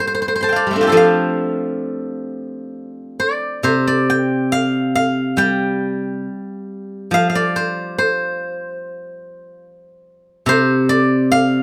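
A steel-string zither, played with fingerpicks, carries this serene, pastoral fragment of traditional Chinese solo music entirely on its own. Its acoustic tone is silvery and ringing, set up front in the mix and reaching from C3 up to C6. The pulse is loose and rubato, with uneven beats that give the line an unhurried, breathing quality. The instrument sits in a moderate studio ambience, captured live in a single room. The clip lasts 11.6 seconds and is cut from a longer piece.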